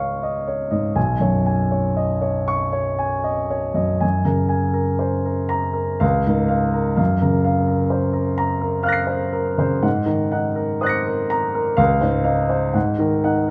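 Serene and luminous, this short excerpt of impressionist classical solo piano moves in a gentle three-beat metre with a free, rubato feel. A single concert grand carries the whole piece from 0.0 to 13.5 seconds, ranging from Cb2 up to Db7, its warm, open tone anchored by a deep bass and crowned by long sustain. The harmony drifts through colourful extended chords, opening on Dbadd9, passing through Gbmaj7#11 and Ab11, and touching Dbmaj9 before settling on an unresolved Ab7sus2. Close, detailed microphones keep the piano up front, while a moderate recital-hall reverb surrounds the sound.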